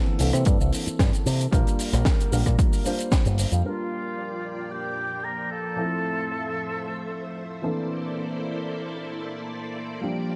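An echo-heavy, lightly reverberant studio mix opens this groovy, sensual nu-disco excerpt at 113 BPM, where a dark, boxy grand piano with sidechain pumping and tape echo runs throughout over a tight funk kit of high-tuned snare, rim click, shaker and low-pass-filtered hats, as a punchy, overdriven electronic kick and an up-front, envelope-filtered picked bass drive the opening until the bass drops out at 3.6 seconds, when a lush, phased, chorused string machine with slow-attack sawtooth chords and an airy, distant wooden flute with vibrato and dub echo enter, the flute singing until 7.6 seconds over chords moving from C13 through Gm7 and Fmaj7.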